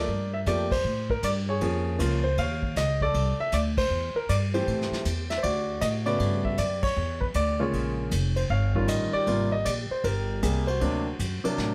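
Cool and late-night, this jazz piano trio excerpt swings easily in 4/4 through a brief stretch cut from a longer piece. A baby grand piano carries the melody from the start, its tone present and polished with a short sustain, sitting up front alongside a pizzicato upright bass whose steel strings give a woody, growly low end. The brush kit joins at 0.5 seconds, softer in the mix, with a medium-tuned snare, tight kick, hi-hat, ride and crash cymbals, its rolled-off top and pumping small-room sound lending a vintage feel. The harmony wanders through rich colours such as Gm9, Gmaj9#11 and Abmaj9 before settling on a D7b13, while the whole trio hits accents together at 0.7, 3.7 and 6.8 seconds. A drum fill at 11.6 seconds closes the passage, all of it framed by a light reverb.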